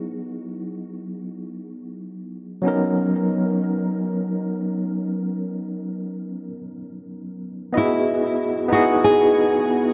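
In free time, this smooth, relaxed chillout fragment in E lydian drifts over Emaj9 and Bmaj9 harmonies. A barky, gritty overdriven tine electric piano carries the accompaniment through a combo amp, with fast tremolo, a low-pass filter, tape echo and a filter sweep, before a break from 6.5 s. A fingerpicked flamenco guitar with fresh strings enters at 7.8 s with a brief melody, also touched with tape echo, and both parts sit up front in a dreamy mix soaked in a huge ambient reverb.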